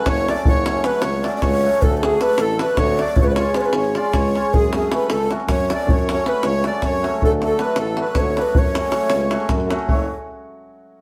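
A live stone room gives this short cut from a longer piece a wet, lingering reverb, with the whole Balkan wedding band playing together in one space. The tune races along at 312 BPM counted in eighths, in a straight 7/8 in F# harmonic minor, its mood fiery yet bittersweet as the chords cycle from F#m through D and C# back to F#m. A breathy, hollow low ney carries the melody with vibrato and a soft attack, while a sweet, reedy accordion with light tremolo tuning plays quietly as a second line in the same register. Beneath them, a hammered cimbalom rings and shimmers as accompaniment, and a distant tuba in classical style, entering at 0.1 seconds, anchors the bass with a warm tone. The davul sits close, tight and dry at the front of the mix, driving the dance from 0.1 seconds until the cut ends at 10.1 seconds.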